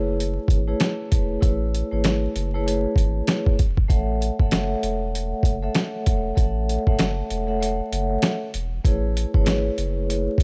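A swung sixteenth-note groove in 4/4 drives this confident, nostalgic boom-bap hip-hop excerpt, with a dusty, compressed soul-sampler drum kit of thumpy kick, medium-tuned snare and hi-hat arriving at 0.2 s, up front in the mix, and a break from 7.6 to 8.8 s. A mellow vibraphone played with soft mallets rings over Amaj7 and A6/E chords with a slow motor vibrato, its metallic tone shaded by cassette tape and filtering, while a deep, round dub sub bass adds transformer-saturated weight beneath. The dry hardware sound carries a gritty edge and a layer of vinyl crackle.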